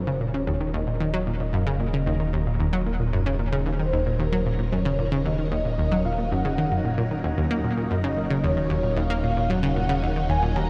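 Ambient, sequencer-driven space music with an expansive, hypnotic mood, this short cut from a longer piece holds on a single Ebm7 chord. An up-front, bright analog pluck riff with chorus and delay drives it over a deep, round analog bass, while a phased string machine fades in with swirling, vintage sustained chords beneath a mellow, horn-like synth lead that carries the melody with vibrato. A huge ambient reverb soaks the whole mix in a dreamy haze.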